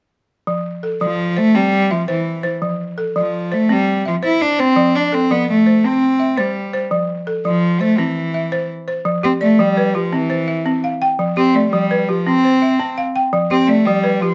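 A single bowed cello carries the melody from 1.0 seconds, played sul tasto with a soft attack and a pure, nasal tone that floats close and up front over a buzzing, woody balafon, which sets up dark, dry arpeggios with hard rubber mallets from 0.5 seconds. This flowing West African traditional excerpt moves in a straight 12/8 at 112 BPM in F lydian, rocking between F and C chords, then shifting at 9.1 seconds into a second section where Fsus2 colours the alternation. A moderate studio reverb gives the pair a modest sense of room.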